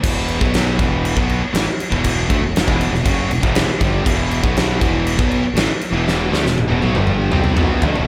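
Hard rock in E minor at 119 BPM, this short, aggressive and menacing passage holds on a single E minor chord in a straight 4/4 feel, cut from a longer piece. Three picked electric guitars carry the riff together throughout, sitting in the background: a bright, cranked stack guitar with overdrive and slapback echo, a bright, double-tracked high-gain guitar with heavy distortion, and an overdriven semi-hollow guitar that adds a warmer, hollow-body tone. Beneath them, a growly fingered electric bass with a direct, punchy sound holds down the low end. The huge acoustic drum kit sits up front with a fat snare, punchy kick, crash cymbal and toms, and a drum fill runs from 6.1 to 8.1 seconds to close the passage. A moderate stage reverb with studio ambience gives the whole a big arena sound.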